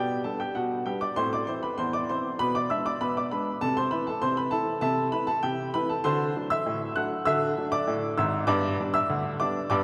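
A woody upright piano, sitting up front with long sustain, plays a lively, cheerful ragtime passage alone in a straight 2/4, ranging from Ab1 deep in the bass to F#6 high in the treble. Its chords move from G/B through Am and a diminished chord on B to Am/C, then settle on D7 at 6.0 seconds before landing on G at 8.5 seconds. A wet cathedral reverb, like a church or concert hall, gives this short fragment of a longer piece a spacious, ringing natural sound.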